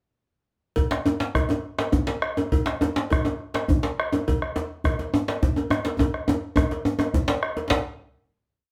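Set in a moderate studio reverb, this short, complete West African drum ensemble piece moves at a driving, earthy 138 BPM in a straight 12/8. A round, up-front bombo and a deep djembe carrying metal rattles keep evenly spread patterns alongside a metallic cowbell bell pattern, while a second, up-front djembe with its own rattling metal plays the lead drum phrases. A drum fill runs from 6.0 to 7.7 seconds before the ensemble closes on a final hit.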